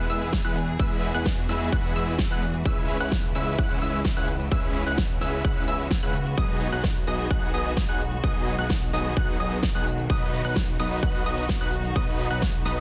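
A straight pulse from a punchy, up-front electronic kick and a big-room kit of crisp hi-hats, shaker and a huge snare drives this triumphant, uplifting festival progressive house excerpt, where a euphoric detuned supersaw riff and a high unison pluck arpeggio, both echoed by digital delay, ride over a fat, nasal analog bass and biting, bowed symphonic strings sustaining chords in the background, all four pumping with sidechain compression in a dense, heavily limited, dry mix.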